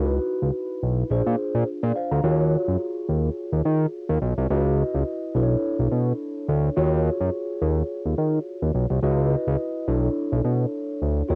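This short cut from a longer piece sounds like a home recording on cassette, with light reverb and a digital ambience around two up-front parts. It is early-eighties boogie funk at 106 BPM in 4/4, with a 56% swing on the sixteenths, tuned to A4 = 441 Hz, and the mood is funky and danceable. A fat analog bass carries the low end from Bb1 to Eb3 throughout the 11.4 seconds. Its thick, warm, nasal, detuned sawtooth and square-wave tone is saturated through a transformer, with a fast attack and sustained, evolving notes. Above it, a mellow, warm tine electric piano plays accompaniment from D4 to Bb5, clean and heard through built-in speakers, with subtle chorus and a cassette-tape colour, sitting quieter than the bass. The harmony moves mostly through minor-eleventh chords, from Dbm11 and Bb7 in the brief opening into a longer passage from 2.2 seconds that cycles through Ebm11, Dbm11 and Bm11.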